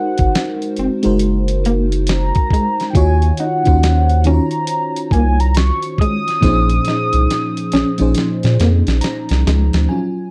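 R&B with a neo-soul lean, this short, soulful and sultry excerpt sits at a slow 69 BPM in 4/4 with a sixteenth-note swing, moving through Ab9, Ebm9 and Bbm11 chords. A mellow, horn-like synth lead carries the melody with a soft attack, vibrato and chorus, its sawtooth tone given a filter sweep and a wave-folded edge. Beneath it, a dark, slightly broken-up electric guitar through a small old amp plays a fingered second line with tremolo, while an FM electric piano layered with a soft pad fills out the chords with chorus and a noise layer. A round, deep analog bass enters at 0.2 seconds and sits up front alongside a gritty, compressed sampler-style drum kit with a thumpy kick, fat snare and hi-hat, which plays a fill from 6.4 seconds to 9.9 seconds. The mix is dry and close, in the manner of a 1970s studio recording, with little reverb.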